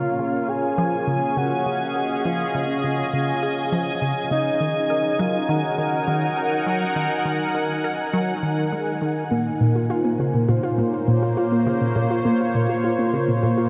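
A dreamy mix soaked in huge reverb, with a cassette-tape character, frames this hypnotic, mysterious stretch of ambient, sequencer-driven space music in Bb minor at 102 BPM, cut from a longer piece. An airy, resonant pad sits up front holding sustained chords through Db, Ebm and Bbm. Beneath it a tight, driving sequenced synth of detuned sawtooth repeats a riff, while a soft, round, dark octave-layered lead carries the melody with chorus, tremolo and delay until 8.7 s. At 9.3 s a warbly, lo-fi pluck enters with mellow arpeggios through chorus and delay.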